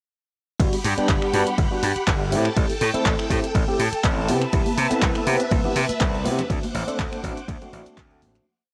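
A four-on-the-floor electronic kick, punchy and up front, drives this feel-good, funky slice of filtered disco house at 122 BPM in G major, with a light 53% swing on the 16ths and a drum machine supplying programmed closed and open hats, finger snaps, handclaps and ride, their hats and cymbals pumping against the kick. Underneath, a bright, gritty slap bass plays an octave-jumping line from G1 to C3, overdriven with tube saturation and sitting up front. An overdriven tine electric piano pushes dotted-rhythm chords in close voicing through a combo amp with fast tremolo and phaser, while a swirling sawtooth string machine holds slow-attack chords high above, thickened by ensemble chorus and 12-bit sampler grit. The harmony cycles through Gmaj7, Am7, Cmaj7 and D7. The whole piece is a drop from 0.6 seconds, with ringing, hard-hand maracas and congas joining in the background at 4.5 seconds, and a fade-out begins at 5.8 seconds. 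Light reverb and a cassette home-recording character give it a tape-worn haze.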